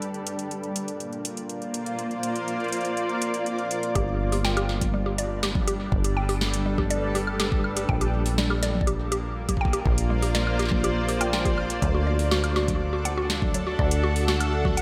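A cloudy, granular pad with 12-bit sampler grit holds sustained chords over a booming analog drum machine of crisp snare, metallic hats, toms and woodblock steeped in tape echo, and at 4.0 seconds a rubbery acid bass, a deep electronic kick and a woody, mallet-like FM pluck spinning chorused arpeggios through diffuse delay join in, before a bubbling stepped-filter texture sits in the background from 11.8 seconds, giving this playful, intricate 122 BPM IDM excerpt a dreamy, reverb-soaked glow.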